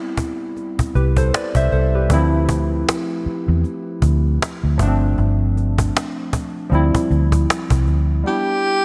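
Chorus-tinged analog keys with a detuned square-and-sawtooth edge open this sensual, moody slice of contemporary R&B at 78 BPM in D dorian with a swung sixteenth feel, joined almost at once by a snappy, dry cajon and a dark, round, foam-muted electric bass moving through Am9, Dm9, G7sus4 and Dm11 under light small-room reverb and a bright 1980s-style digital sheen, before a raspy, breathy alto saxophone growls in on a lone G4 at 8.3 seconds over Em7 just as the cut ends.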